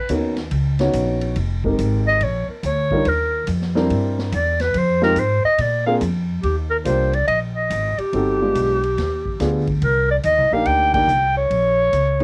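Relaxed and playful, this swinging small-group bop excerpt in Eb major at 142 BPM puts an up-front, vintage-toned clarinet with vibrato and a soft-attack subtone in the spotlight for a solo over the first 6.4 seconds, supported by a warm baby grand piano, a woody, growly pizzicato upright bass and a quieter drum kit with a punchy kick, medium-tuned snare, hi-hat and ride cymbal, before the band hits an accent at 10.9 seconds, in a home cassette recording with light reverb.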